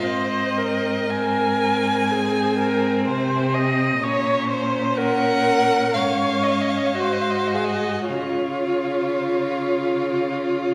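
Classical chamber music for string quartet, this slow romantic movement unfolds with a warm, lyrical mood and a rubato feel, cut from a longer piece. The first violin carries the melody up front, its tone warm with a smooth top, shaped by vibrato and expressive portamento. The second violin sits further back with a focused, rich sound, tracing a second line beneath, while the viola, close and up front with a soft attack, supplies accompaniment full of vibrato and sliding expression. The cello anchors the bass with its own soft-edged, expressive vibrato and portamento. The harmony moves through Ab, Bbm and Ab7 before settling on Db at 8.1 seconds, and a scoring-stage reverb lends the ensemble a lush, enveloping space.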